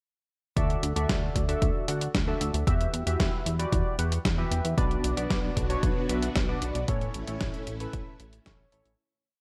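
Nostalgic and bittersweet, this short italo disco piece rides a punchy four-on-the-floor electronic kick and a clean 12-bit drum machine's closed hi-hat and snare under a driving eighth-note chorused synth bass, while a glossy chorused polysynth sits up front with dotted-rhythm chord stabs through digital delay, a lush string machine pad enters in the background at 4.8 seconds, and the dark, lightly reverberant mix fades out from 6.2 seconds.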